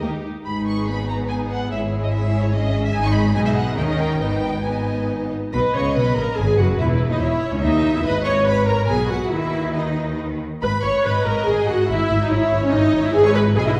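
Restless and urgent, this quick classical-period movement for string orchestra in G# minor moves in a rubato 3/4 at 136-148 BPM, its focused violin melody and expressive second violins riding over a lush, up-front viola accompaniment, an intense cello line set in the background and a bowed double bass section, all heard from further back in a wet scoring-stage space before a new section arrives at 5.5 seconds in this short cut from a longer piece.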